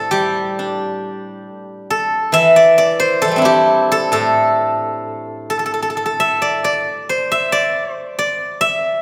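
Chinese traditional solo plucked-string music with a pastoral, elegant mood unfolds in a free, rubato 2/4 through this brief nine-second excerpt from a longer piece. A lone steel-string zither, played with fingerpicks and sitting up front, carries everything across a range from A2 to E5, its bright, silvery tone ringing out. Moderate concert-hall reverb surrounds the instrument, lending the sound the spacious resonance of a church or hall.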